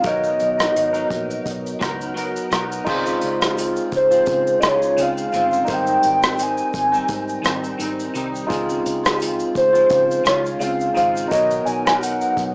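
A lightly swung, laid-back groove from an up-front unplugged drum kit with dark cymbals, bundle sticks and a punchy kick carries this hazy indie-pop excerpt, where a hollow, woody clarinet-like synth lead sings the melody through lush chorus, analog delay and cassette tape over a barky tine electric piano, a twangy clean electric guitar with warbly pitch drift and a round, foam-muted vintage bass, while a grainy tube shaker slips in very quietly at 2.9 s, the whole sitting in a wet small room with a homespun small-speaker sound.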